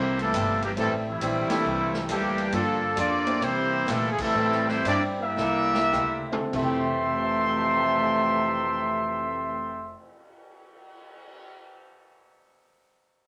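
Up-front bright trumpets carry the melody over a clear trombone section, a boxy picked archtop guitar and a woody pizzicato upright bass as this swinging, brassy big-band excerpt opens, with a punchy big-room drum kit and a warm background baby grand piano joining moments later, the band slowing into an accent at 4.1 seconds and a drum fill from 5.4 to 6.5 seconds before settling onto a resolving chord in a reverberant studio space.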